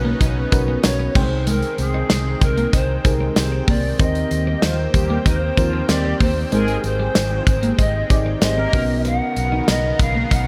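The recording has a bright 1980s-style digital sheen, with light reverb and a small room ambience around a nostalgic, uplifting pop excerpt at 95 BPM in a straight 4/4. A reedy, airy pan flute carries the melody from a distance, its soft chiff and vibrato trailed by delay, while a dreamy, warbling FM electric piano layered with a soft pad supplies chorused accompaniment. Beneath them a thick, detuned unison pad holds sustained chords, and a twangy, clean twelve-string electric guitar picks a compressed riff in the background, shimmering with lush chorus and delay. A round, punchy fingered bass anchors the low end, and an up-front acoustic drum kit with a tight kick, medium-tuned snare, hi-hat, crash and tambourine comes in at 0.2 seconds, alongside a faint, jingly tambourine. Mellow, brassy synth stabs with vibrato and a filter sweep sit in the background from 4.2 to 8.8 seconds, as the harmony moves through lush major-seventh and ninth colours before returning to Bmaj9.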